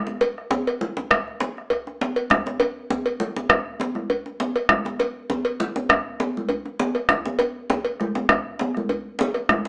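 Congas and djembe open this festive West African drum ensemble excerpt at 0.1 s, the congas high-tuned and ringing, played with soft hands, and the djembe deep and close. A metallic, dry cowbell joins at 0.2 s and sits up front, and the round bombo arrives at 0.4 s as the heaviest voice in the mix. The group plays a powerful, straight 4/4 groove at 100 BPM, and the whole passage stays in a single section cut from a longer piece. The sound has a live, one-room character with a moderate large-studio reverb, though the overall tone carries a small-speaker quality. The congas and bombo share a small-room ambience, while the djembe's quieter, intimate tone rounds out the ensemble until the parts stop between 9.5 and 9.7 s.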